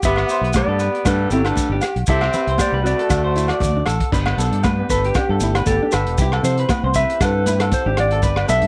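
This dry, close recording has a 1970s studio sound, and this short cut from a longer highlife guitar band piece feels sunny and danceable over lightly swung sixteenths and a G, C, D progression. Up front, a dark, clean, fingered electric guitar carries the melody, and a round, direct electric bass sits prominently beneath it. A second mellow guitar, compressed and set back, plays accompaniment, and both mellow guitars share a lush chorus. A bright, twangy guitar through a small old amp picks slightly broken-up, lo-fi arpeggios with slapback echo. A clear, punchy trumpet with light vibrato plays a second line until 3.9 s, and a clean electric guitar solo arrives at 4.1 s, along with a very quiet, lightly overdriven tonewheel organ holding percussive chords through a slow rotary speaker. The crunchy breakbeat kit is gritty and saturated, with a punchy kick, rim clicks, hi-hat and dark crash cymbals. 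Grainy maracas join in, while high-tuned, thick-skinned congas and ringing agogo bells fill in the background.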